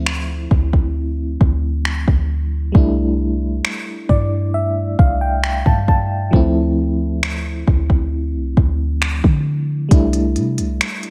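A slow, straight 4/4 groove at 67 BPM in D minor carries this moody, sensual contemporary R&B excerpt, where a soft-kicked, tape-warm electronic drum kit of finger snaps, smooth hi-hat and kick sits up front beside a deep, boomy sine 808-style bass, while a mellow FM electric piano with tremolo and a noise layer moves between Dm9 and C69 chords and adds a fill from 3.6 to 6.3 seconds, all in a dry, close mix.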